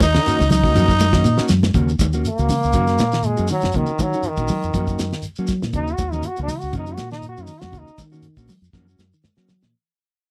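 Intense and defiant, this dry, close 1970s-style afrobeat cut in Eb minor rides a swung 120 BPM groove over alternating Ebm7 and Gb6 chords: a growling, raspy tenor saxophone up front and a very quiet, clear trumpet open and stop at 1.5 s, then a bright, roomy trombone takes its solo from 2.3 s as the track fades out, while underneath sit a round, punchy fingered electric bass, a damped 70s drum kit with a fat snare and tight kick, thin-skinned congas in the background, a grainy shekere, and two mellow, clean electric guitars playing arpeggios and stabs.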